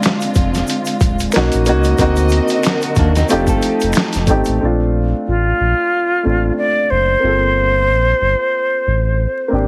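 R&B with a neo-soul lean, this smooth, introspective excerpt moves at an easy swung pace, cut from a longer piece. A woody upright piano with short sustain carries the accompaniment throughout, while a dark, lush studio string section holds bowed chords and a gritty, pitched-down sampler-style boom bap kit with a thumpy kick and medium-tuned snare sits up front, both stopping at 4.6 seconds. Finger snaps, egg shaker and group handclaps stay close and dry in the background over that opening stretch. A deep, full sine sub bass with a fast attack enters at 0.4 seconds and sustains beneath everything that follows, and a small, boxy nylon-string guitar adds a brief fingerpicked second line from 3.0 seconds. In the later passage a breathy, tongued jazz flute with vibrato and rolled-off highs takes the melody up front over the piano and bass. The whole mix has a heavily compressed radio sound with vinyl crackle and light reverb.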